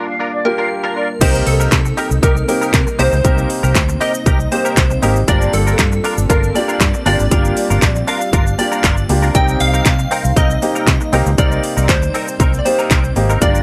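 Dance-pop with a bittersweet yet energetic mood, this cut from a longer piece opens on a brief break in which a dark, retro pulse-width pad holds soft sustained chords in the background, pumping with sidechain compression, while a bright, twangy clean guitar picks a compressed riff through ensemble chorus. A pure, distant flute with vibrato sings a short, expressive phrase with tape echo for about a second, and a natural baby grand piano joins at 0.4 seconds with pumping accompaniment. A shimmering, dreamy FM bell carries the melody from 0.5 seconds, its detuned, decaying tones spread by chorus and tape echo. At 1.2 seconds the groove drops in: a round, foam-muted fingered bass pumps underneath, and an up-front electronic drum kit brings a punchy kick, metallic hi-hats, handclaps, shaker and crash cymbal. The harmony moves between Gm7 and Cm7, and the dry, gritty hardware recording keeps the whole mix close and immediate with little reverb.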